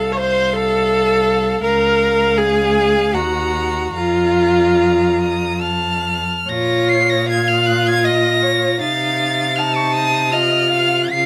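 All four members of a string quartet sound together from the opening second of this slow, elegiac passage in B-flat minor, cut from a longer romantic movement. It moves in 3/4 at roughly 70-85 BPM with a rubato feel, yearning and unhurried. The first violin carries the melody high above, reaching up to C7 with a rich, focused tone, vibrato and a smooth top. Beneath it the second violin adds a second line, its soft attacks and expressive portamento giving a warm glow. The viola sits up front in the accompaniment with a clear, even sound, while the close cello anchors the bass with a focused, vibrato-laden tone. Light reverb surrounds the ensemble as the harmony passes from F over C through Ebm, and a new phrase begins at 6.5 seconds on Bbm before settling on F7 over C at 8.8 seconds.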